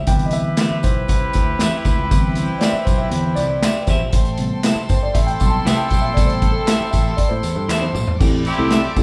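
A straight, danceable 4/4 groove from a punchy, up-front vintage drum kit with dark cymbals drives this joyful excerpt of uptempo 1960s-style soul, backed by a round, foam-muted picked electric bass and a small-room layer of tambourine and handclaps. A mellow tine electric piano takes a solo over a Cmaj7 to Am7 change, while a tight, clear horn section holds a second line and a clean electric guitar adds stabs from 0.6 seconds. A soft-attack, floating string section drifts in from 1.1 seconds, and a drum fill at 7.7 seconds caps the phrase, all in the moderate, large studio reverb of a band playing live in one room.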